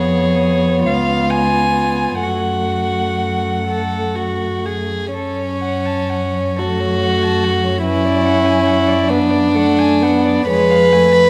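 An airy, floating second violin sits up front in this solemn, melancholic fragment of a slow romantic string quartet movement in F# minor, played with rubato at 40-49 BPM in 6/8, while a dark first violin with light vibrato carries the melody, a nasal, woody viola supplies the accompaniment and an intimate cello holds the bass, all four bowed sul tasto in a moderate recital hall reverb.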